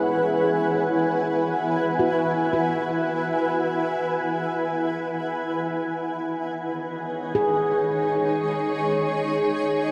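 Luminous and weightless, this ambient excerpt floats in free time in E major, tuned slightly low to A4 = 439 Hz, and is cut from a longer piece. A granular cloud pad sits up front with sustained chords, its bright, blurred tone built from detuned sine and sawtooth voices in unison, with a slow attack, long release and its own built-in reverb, while a filter sweep runs across it for the whole 9.9 seconds. Further back, a handpan plays arpeggios with a ringing, meditative stainless-steel tone struck by the fingertips, carrying a boxy small-room character and a diffuse ambient delay. The harmony moves from Eadd9 to C#sus2 at 5.7 seconds. A cathedral reverb with a 6.9-second decay bathes the recording, giving it a wet, cavernous space.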